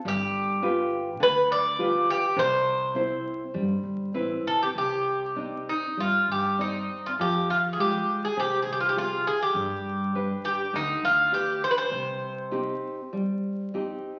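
Crackling like a very old 78 rpm record and bathed in a lush large-studio reverb, this passionate, longing fado-style ballad excerpt unfolds with a free rubato feel, as an up-front bouzouki carries the melody in bright, metallic picked double strings with some octave doubling, a fingerpicked classical nylon-string guitar, also up front, gives warm accompaniment, and a woody pizzicato upright bass anchors the low end until 12.7 s, the bouzouki stopping at 13.7 s and the guitar closing alone at 14.2 s.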